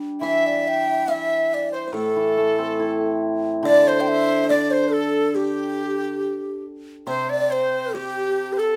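A shimmering, ringing hammered dulcimer opens this graceful, festive fragment of Chinese traditional chamber music, joined almost at once at 0.2 seconds by a low xiao carrying the melody with a breathy, soft-attacked tone and unsteady vibrato. Beneath it, a large dizi with a buzzing membrane sits close and up front in a second line, while a woody, dark kalimba plucked with the thumbnail buzzes quietly in the background. The whole ensemble sounds in light reverb, and the music moves into a new section at 7.1 seconds before the cut at 8.8 seconds.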